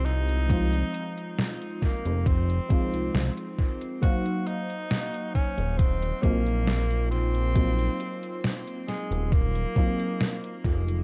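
An echo-heavy, cassette-tape haze wraps this nostalgic vaporwave excerpt at 68 BPM in Eb dorian, where a breathy, whispered tenor saxophone sings an intimate, scooped melody with vibrato and tape echo over a soft, round FM electric piano drenched in phaser, analog chorus and dub echo, a glossy, up-front synth bass with tube saturation, an overdriven thumpy kick and a detuned 8-bit drum machine's fat snare and hi-hat, all drifting from Fm7 to Ebm69.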